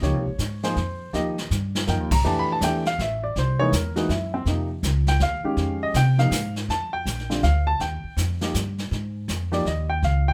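The sound is dry and close, with little reverb, so the trio feels intimate and immediate. This late-night, swinging jazz piano trio fragment in F minor moves at 162 BPM in a lilting 3/4, its eighth notes swung. A baby grand piano sits up front and carries the melody as a solo throughout, its warm tone natural and intimate, with the soft clatter of its action audible. A pizzicato upright bass, woody and plucked on steel strings, is also placed up front, while a brushed drum kit in a small room adds dark cymbals, a medium-tuned snare, hi-hat and a boomy kick, with a brief fill between 1.1 and 1.9 seconds. The harmony drifts through lush chords such as Dbmaj9, Ebadd9 and C7alt before settling on simpler Bb, Eb and Ab5 sonorities as the phrase repeats at 6.7 seconds.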